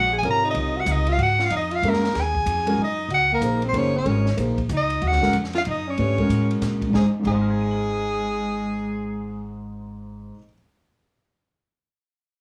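A small, close booth sound with a short, dry room tail frames this brief excerpt of modal jazz. The mood is spiritual and open, moving at a brisk 188 BPM in a swung 3/4 in Ab mixolydian, resting on an Ab9sus4 chord before settling onto a plain Ab at 6.9 seconds. A breathy soprano saxophone carries the melody up front with clear vibrato. Beneath it, a breathy alto saxophone plays a softer second line in a lower register, its subtone, scooped notes and gentle attack heard close to the microphone. Upright bass, woody and growly with a thumpy pizzicato, sits up front, and a grand piano accompanies with long sustain and audible action noise that lend it an intimate, natural character. A compact cocktail drum kit, dark and smooth with a high-tuned snare and punchy kick, plays crash, hi-hat, ride, snare and kick quietly in the background until 7.4 seconds, and the piano rings on to the close at 10.5 seconds.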